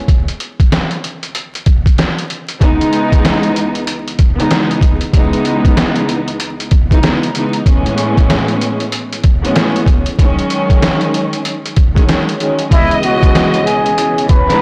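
A swung boom-bap groove in 4/4 opens this moody, gritty hip hop piece cut from a longer track, with a sampler-style kit playing alone until 2.6 seconds. The kit is compressed and pitched down, pairing a thumpy kick and a medium-tuned snare with hi-hat, re-recorded in a small room and sitting up front. At 2.6 seconds a lush bowed string section enters over a minor progression, its vibrato and portamento expressive and its top smooth, colored by cassette tape and filtering. At 12.7 seconds a plunger-muted trumpet takes the melody in a jazz style, mellow and breathy with soft attacks, scooped notes and a whispered, intimate wah-wah quality. A second string section holds sustained chords quietly in the background. The whole recording is blown-out and overdriven with vinyl crackle, set in light reverb and small room ambience.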